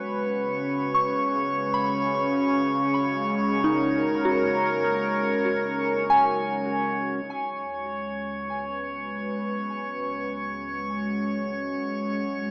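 Heard through a small speaker and bathed in a wet concert-hall reverb, this melancholic, spacious ambient piece in 3/4 at 75 BPM, cut from a longer work, rests on a dark, detuned sawtooth pad with chorus holding sustained chords, while a glassy sine texture of drifting overtones, also chorused and up front, hovers above; a soft, pure FM bell fades in over the first 7.2 seconds and plays chorused, tape-echoed arpeggios until 9.1 seconds, and a deep, round sine sub bass enters in the background at 7.2 seconds as the harmony settles onto C#5.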